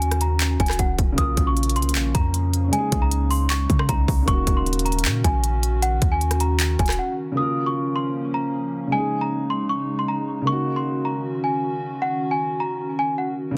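Brooding and melancholic, this trap-flavoured hip hop excerpt moves at 155 BPM in a half-time feel, cycling through Ebm7, Bbm and Dbsus2. Up front, a small celesta carries the melody high in its range with a bell-like, delicate sweetness, its hard felt hammers softened by a low-pass filter. Beneath it, a dark baby grand piano plays mellow accompaniment with long sustain, also filtered, while a warbling tape-like pad holds nostalgic, lo-fi chords that gain a vintage, detuned shimmer from chorus and its own reverb. A clean, boomy 808-style bass with a fast attack and decaying sine tone anchors the low end alongside a trap kit of hard-clipped kick, crisp hi-hats, handclaps and rim clicks. The bass and drums drop out at 7.0 seconds, leaving celesta, piano and pad to repeat the progression on their own in a dense, heavily limited mix with little room sound.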